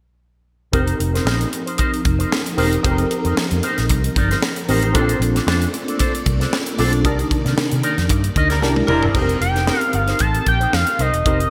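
A bright, glossy 1980s-style digital production bathed in a lush hall reverb, with a faint mains hum underneath, carries this breezy jazz-funk pop fragment at 114 BPM with a light sixteenth-note swing. A crisp fusion kit with a punchy kick and high-tuned snare sits up front in gated reverb over a round, dark fingered bass, while a worn, slightly out-of-tune tine electric piano, a twangy envelope-filtered guitar riff and a swirling string machine in the background fill out the groove, with a band accent from 7 seconds leading into a brief, tight horn section line at 8.5 seconds, joined by a drum fill just after. At 9.4 seconds a fat, nasal analog lead with vibrato takes the melody over the returning F7sus4 chord.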